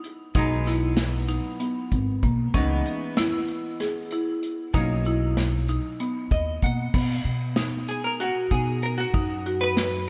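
A clean, picked archtop guitar with a hollow-body tone appears in this bright, driving excerpt of progressive band music in 7/8 at 191 BPM (counted in eighths), in B major. The guitar is double-tracked with slapback echo and carries the accompaniment through Emaj7, C#m7 and Bmaj7 chords. A hollow-body jazz guitar plays a fill at 6.0 seconds and a solo from 6.9 seconds over a B chord. A buzzing marimba with hardwood bars and medium hard mallets plays dry, woody arpeggios with its own slapback echo. Up front, an acoustic drum kit played with bundle sticks gives a punchy kick, a medium-tuned snare, hi-hat and dark crash cymbals in an airy, polished small-room sound, while a pizzicato upright bass with steel strings adds a dusky low end. A lush hall reverb gives the whole band a big arena sound.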